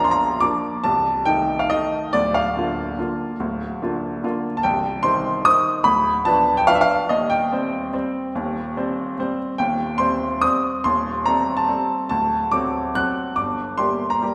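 In a rubato 3/4 waltz lilt, this bittersweet, wistful classical fragment, cut from a longer piece, features a solo baby grand piano, intimate and up front, with its action noise audible, ranging from the deep bass to the high treble and bathed in a wet concert-hall reverb heard from further back in the room, as the harmony drifts through diminished colours before settling through D7 onto G minor at 13.4 seconds.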